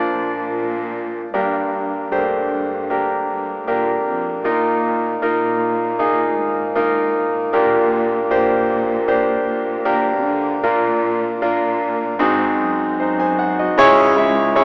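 This 14.6-second excerpt of a longing, emotional pop ballad opens with a bright concert grand piano carrying the accompaniment, with brilliant tone, deep bass and long sustain placed up front. A warm chamber cello section holds the bass line beneath it, its bowed sul tasto sound soft in attack, intimate and close, with vibrato. The tempo sits at a steady 77 BPM in a straight 4/4, tuned slightly low to A4 = 436 Hz. The harmony moves from Bb through Gm, Bbsus4, Gm/Bb and back to Bb, then turns to Ab7 at 12.2 seconds before landing on C#m at 13.8 seconds. A lush hall reverb surrounds the performance, though the rough home-demo mix gives it a small-speaker character.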